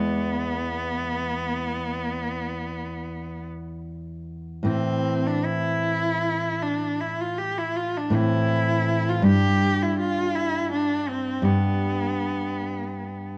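A rich, focused, close bowed cello with vibrato sings an elegiac, yearning melody over dark fingerpicked nylon-string classical guitar, complete with finger squeak, in this romantic A minor fragment, taken in a rubato 12/8 at 48-56 BPM, moving from E to Am at 4.7 seconds and G at 9.3 seconds, with both players up front in the moderate reverb of a recital hall.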